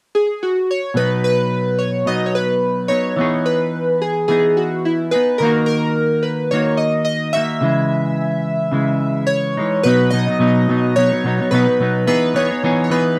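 Laid-back and sunny, this short indie pop excerpt moves at 108 BPM in B major, with chorused retro synth keys carrying a glossy, detuned melody from 0.1 seconds, their bright pulse-wave tone given subtle chorus and slapback echo. A clean semi-hollow electric guitar joins at 0.9 seconds with up-front hollow-body accompaniment, its subtle chorus and warbly pitch drift colouring chords that move from B through Emaj7, D#m and C#madd9. The dry, close 1970s-style studio sound sits in a small room, and a new section begins at 9.9 seconds before the cut at 13.2 seconds.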